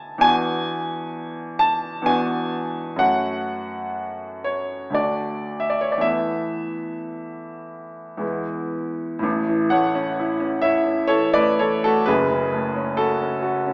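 In a lilting three-beat metre, the time flexes freely with rubato, giving this short fragment of a romantic classical nocturne a tender, nostalgic sway. A single grand piano carries the whole piece, its smooth, warm, vintage tone sitting up front and spanning deep bass notes up to the middle-high register. The harmony drifts from an opening E9 through F#m, D and a suspended E chord before settling onto E, then turns to a new passage at 9.2 seconds that begins on A and moves back to F#m at 12.1 seconds. A generous large-studio reverb surrounds the instrument, and the overall sound feels heard from further back in the room through a small speaker. The fragment closes at 13.7 seconds, clearly cut from a longer piece.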